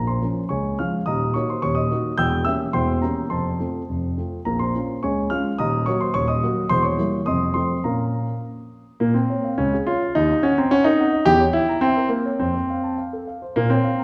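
A dark, mellow grand piano carries this classical-period sonatina alone, sounding up front even as the listener seems placed further back in a recital hall. The mood is dramatic and serious, set in a steady 2/4 with a straight feel. The hall's reverb is wet and lingering, giving the solo piano a spacious, resonant halo. The harmony circles through minor and diminished colours, leaning on a tense diminished seventh before resolving toward the dominant. A phrase is stated once and begins again at 9.0 seconds, the piece breaking off at 14.0 seconds as it is cut from a longer work.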